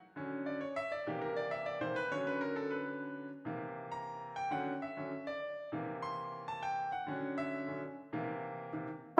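Festive and joyful, this short latin passage, cut from a longer piece, moves at a brisk 199 BPM in a straight 4/4. A bright concert grand piano carries it alone, playing an accompaniment part from 0.2 seconds to about 8.9 seconds across a range from C3 to C6. The chords alternate steadily between Dmaj7 and C7 throughout. The piano sounds brilliant and polished, sitting up front with a deep bass and a strong presence. A wet large-studio reverb surrounds it, and the sound of a band playing live in one room comes through alongside lossy compression artefacts.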